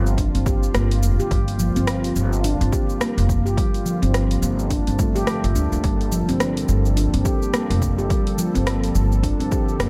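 A dark, warm production with light reverb and small-room ambience frames this hypnotic, meditative slice of organic downtempo, cut from a longer piece. Up front, a handpan of nitrided steel rings out mellow arpeggios under soft fingertips, trailed by tape echo, while a woody, growly pizzicato upright bass with steel strings sits close beside it, shaped by sidechain pumping. Behind them, an analog pad built from detuned sawtooth voices holds smooth sustained chords with a slow attack, long release and chorus, and it carries sidechain pumping as well. A layered, overdriven deep house kit enters at 0.1 seconds with cabasa, hi-hat and rim click, and a punchy, overdriven electronic kick follows at 0.2 seconds. The groove rides a swung sixteenth-note feel over a single Gm7 chord from start to finish.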